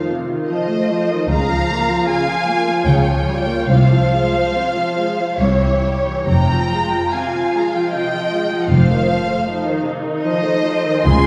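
Moving in a rubato 3/4 at roughly 62-80 BPM, this slow romantic movement for string orchestra in F minor carries a melancholic, yearning mood, cut from a longer piece. Up-front violins sing the focused, smooth-topped melody over a second violin line and an expressive viola accompaniment, while lush cellos and woody double basses enter at 1.3 s to anchor the bass, all bowed with vibrato. A wet scoring-stage reverb places the ensemble further back in the room as the harmony moves from F7 through Bbm/Db and Fm/C to C and returns to F7 at 8.7 s.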